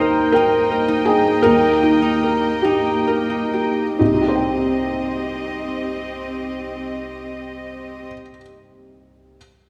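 In a rubato 6/8 at 42-58 BPM in dotted quarters that slows over the first 4.0 seconds, this brief cut from a longer neoclassical piece in C minor moves from Eb to Cm with a longing, reflective mood: a soft, dark felt-muted upright piano sits up front with audible action noise, a warm chamber string section holds sustained chords with light vibrato and sul tasto bowing until 8.1 seconds, and a fingerpicked concert harp plays ringing arpeggios until 7.4 seconds, heard in a moderate concert hall reverb.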